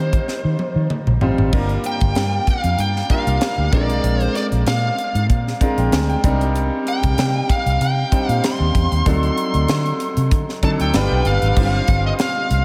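Bittersweet and urban, this polished 1980s jazz-funk pop excerpt moves at 96 BPM in 4/4 with a light sixteenth-note swing, as a dark, overdriven picked lead guitar carries the melody through diffuse ambient delay over a brilliant grand piano drenched in lush chorus, a round, foam-muted fingered bass sitting up front, and an airy fusion kit with a high-tuned snare and punchy kick that enters at 0.1 seconds and launches a fill moments later, all in a dreamy mix soaked in cathedral reverb, with a piano fill at 5.3 seconds and chords drifting from Eb69 through Gm7, Cm9 and D7b9 to a closing G7sus4.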